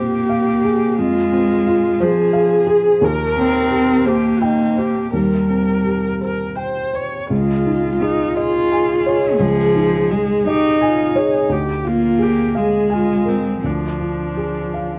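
Neoclassical piano and strings in F minor, a melancholic, longing fragment cut from a longer piece, moving in a slow, rubato 6/8 at 57 BPM with the harmony passing from Fm through Cm7/Eb and Dbadd9 to Bb7/D. A felt-muted upright piano, soft and intimate with a thick-felt mellowness, carries the accompaniment across its span from Db2 to Ab5, while a single con sordino viola adds veiled, distant support with vibrato and portamento. One muted cello, dark and close, sings the second line between F3 and F4, all heard through the dulled, cassette-taped sound of a home recording with light studio reverb.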